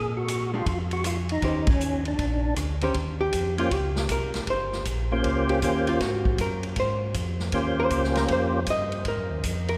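A swung 157 BPM groove in 4/4 drives this greasy, bluesy soul jazz organ trio excerpt in Eb mixolydian, where a fat, up-front percussive tonewheel organ with key click, slow rotary speaker and chorus vibrato carries the melody until 8.6 seconds over a round, mellow organ bass, while a vintage kit with dark cymbals and a punchy kick joins at 0.3 seconds, a band accent lands at 1.6 seconds, and a clean, compressed archtop guitar that enters at 0.5 seconds takes a hollow-body solo from 3.0 seconds over Eb13 and Ab13 chords, all bathed in a moderate cathedral reverb.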